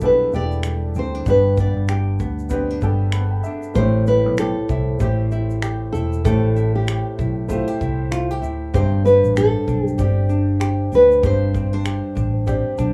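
This reflective, wistful acoustic pop excerpt in A minor opens with the full band at once: a fingerpicked nylon-string guitar carries the melody up front, full-bodied and classical in tone, with audible finger squeak. Beneath it, a fingerpicked flamenco guitar and a clear, woody upright piano fill out the accompaniment, while a dark, round, foam-muted electric bass sits punchy and forward in the low end. A loose indie kit of finger snaps, tight kick drum and shaker sets an unhurried 96 BPM in 4/4 with a gentle sixteenth-note swing. The harmony moves from Em7 to G, then settles on Am7 before turning to Gsus4, and the piano adds short fills at 2.8 seconds and again at 12.5 seconds, just after the nylon guitar's melody stops at 12.3 seconds. Light reverb and small-room ambience give the whole a rough, intimate home-demo character.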